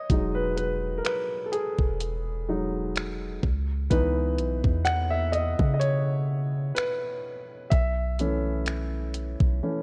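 A baby grand piano opens this short, longing cut from a longer piece of contemporary R&B, its intimate, natural tone carrying faint action noise as it takes the lead over chords moving from Emaj7 to C#m9 and then to B7sus4. Almost at once a deep, boomy 808-style bass joins, a sine tone with a noise layer, fast attack and mellow decay. Alongside it, a crisp 8-bit digital drum machine lays down finger snaps, hi-hat and a thumpy kick with a sampler-style, tape-tinged edge and a lightly swung feel. All three parts sit up front, and the whole recording carries light reverb and the worn, warbling pitch drift of old cassette tape, deepening its moody air. The bass and drums break off at 9.6 seconds, leaving the piano to ring alone until 9.8 seconds.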